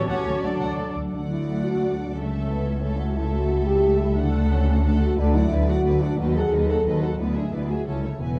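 A woody, up-front double bass section anchors this cheerful, graceful classical excerpt in triple time, joined by a lush cello section while a dark, vibrato-laden violin section carries the melody and a second violin section and a smooth viola section fill the middle. A mellow French horn section holds tight sustained chords as a bright, ringing concert harp plays arpeggios in the background. In the opening 0.9 s, a clear oboe, an airy flute group, a soft clarinet and a distant, roomy bassoon add brief woodwind colour, all set in a reverberant recital hall with a dark production.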